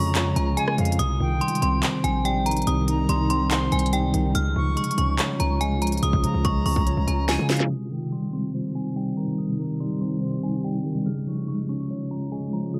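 A melancholic, eerie half-time trap fragment opens on a ringing, inharmonic FM bell melody with chorus and tape echo, shadowed by a distant, vibrato-laced concert flute, a clean, up-front tine electric piano and a dark, blurred granular pad, while a punchy, heavy 808 bass and a crisp trap kit with a hard-clipped kick, sharp snare, handclaps and rim clicks drive until a fill from 6.0 seconds ends both at 7.7 seconds, leaving the melodic parts to drift through a filter sweep under a dry mix dusted with vinyl crackle.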